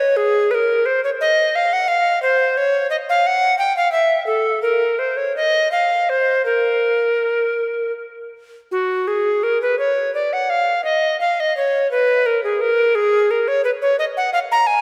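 Grave and solemn, this fragment of a baroque-style classical fantasia gives a single tenor recorder the stage alone, moving in a flexible, rubato triple metre. The recorder sits up front with a woody, airy tone, crisp chiff on each attack, vibrato and lifted highs, and it lingers inside a long, wet church reverb. Its opening phrase runs to 8.7 seconds and then returns in the same form until the cut at 14.8 seconds.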